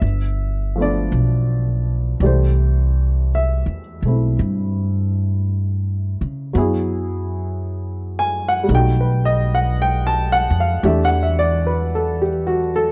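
A woody, thumpy upright bass with gut strings sits up front, plucked pizzicato beneath a dark, mellow baby grand piano whose short sustain and audible action noise keep the sound close and natural. This wistful, intimate jazz ballad moves at a slow 56 BPM in 4/4 with swung eighths, drifting through harmonies such as G9, C6, F#sus2 and B7b13 before settling on Em11 near 10.8 seconds. The dry, close studio sound of a 1970s session leaves both instruments playing together throughout this short cut from a longer piece.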